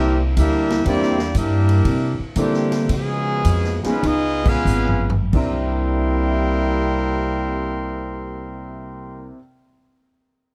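Joyful and energetic, this short big band swing excerpt in C mixolydian slows from around 123 toward 86 BPM as a smooth, soft-attack trumpet section carries the melody over a warm, lightly vibrato trombone second line, long-sustaining baby grand piano chords and a woody, thumpy upright bass up front, while an edgy saxophone section holds very quiet chords until 2.9 s and a punchy acoustic drum kit swings until 5.6 s, playing a fill just after the band accent at 4.3 s, all in a dark, dry production.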